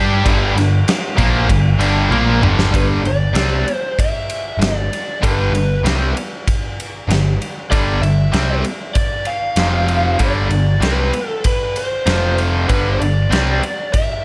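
A straight 4/4 hard rock groove at 96 BPM drives this swaggering, powerful excerpt, where two bright, picked electric guitars, one distorted and set back, the other overdriven, play the riff over a round, amped picked bass and a big acoustic drum kit up front with a fat snare, punchy kick, ride and toms, while a tight, double-tracked distorted guitar plays the riff only until 2.7 seconds, a drum fill from 2.1 seconds leads into the second section, and from 2.8 seconds a warm lead guitar through a small cranked amp carries the melody over G5 and F5 power chords in a small room reverb.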